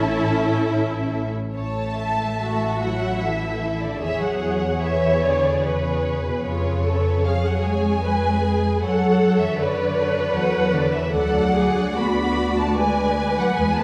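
A dark, expressive first violin section carries the melody of this slow, romantic movement for string orchestra. Its bowed line sounds distant and lush as it sways in three with a free, rubato pulse. Beneath it, a second violin section traces a smooth, even inner line, the violas add a focused accompaniment, and every section sings with vibrato. The cellos bring portamento to their bass part, while the double basses sit up front with a rich low end. Cut from a longer piece, the tender passage moves through a series of shifting chords across its 13.8 seconds, reaching minor harmonies near the end. A spacious concert hall reverb surrounds the ensemble and places the listener further back in the room.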